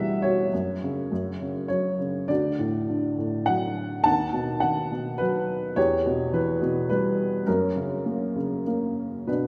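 Cool and bittersweet, this short fragment of a longer classical piece sets a lyrical solo piano in triple metre around 96-108 BPM, played with rubato. A dark upright piano carries everything alone from 0.0 to 9.5 seconds, spanning D2 to A5 with a mellow, woody, boxy tone and audible action noise that keeps it intimate and up front. The harmony moves from Em through F#5, D and B7/D# before returning to Em and settling on F#. A wet scoring stage reverb with a 1.8-second decay surrounds the instrument, giving it the resonance of a church or concert hall. The tuning sits slightly high, with A4 at 441 Hz.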